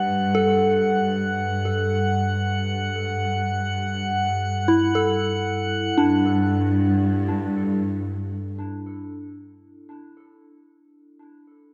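A soft synth bell leads this luminous, serene ambient excerpt, spinning gentle arpeggios between D4 and A4 from the opening through 11.7 seconds, its pure, fast-attack tones decaying through chorus, phaser and tape echo. Beneath it, a bowed cello section holds a low G2 in the bass, sounding intimate and up front with light vibrato and a soft, sul tasto touch until 8.6 seconds. A glassy harmonics texture drifts above on F#5, its slow-attack sine tones sustained with chorus and their own reverb, dropping out at 6.0 seconds. The music floats in free time over an F#m/G harmony that settles onto G5 at the six-second mark, and the whole sits in a lush concert hall reverb that lends it a spacious glow.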